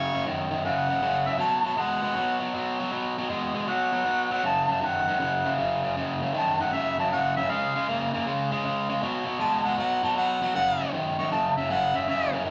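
A harmonica and an electric guitar begin together in this soulful, laid-back blues, a short passage cut from a longer piece with a relaxed swing on the eighth notes. The harmonica carries the solo melody in a jazz style, its tone warm with a smooth top and a touch of overdrive, shaped by light vibrato and scooped notes. Beneath it the picked guitar plays a riff low in its range, bright and crunchy with overdrive, sitting up front in the mix. The harmony moves through F#5, B5 and C# chords before settling back on F#5 near 10.5 seconds. A wet, large studio reverb and a layer of vinyl crackle give the sound an aged, roomy quality, and the harmonica finishes at 12.3 seconds, just before the guitar at 12.5.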